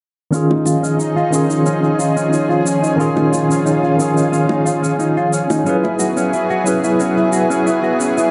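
Soaked in a wet spring reverb and heavy echo, with a rolled-off top end, this excerpt from a longer sunset chillout piece settles into a relaxed, wistful mood in a straight 4/4. Up front, a worn, slightly out-of-tune tine electric piano carries the accompaniment through a combo amp, its medium tremolo and filtered tone trailing into dub echo. Beside it, a thick, detuned unison pad holds sustained chords with a slow attack, long release and a bright chorus shimmer, moving from Eb9sus4 to Gb9sus4 at 5.7 seconds. A dark, compressed electric guitar plays fingered arpeggios through a low-pass filter and dub echo, with a filter sweep running across its whole span. In the background, round, low-tuned bongos sit close and dry until 6.1 seconds, while an overdriven electronic shaker, layered and re-recorded in a large room, stays low in the mix.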